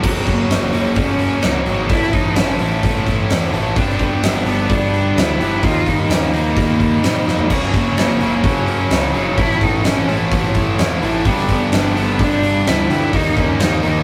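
Up front, a huge arena drum kit with a punchy kick, fat snare and bright cymbals drives this bittersweet, anthemic stretch of quiet-loud alternative rock at 128 BPM, cut from a longer piece and moving through F#, A, G and D# chords. A rich, smooth cello sings the melody with vibrato from 0.3 seconds over a scooped high-gain guitar riff, with a thick fuzz guitar and a growling overdriven bass set further back. A drum fill at 7.3 seconds brings in a double-tracked, compressed distorted guitar at 7.5 seconds, all caught in a rough rehearsal-room recording with a short, wet booth ambience.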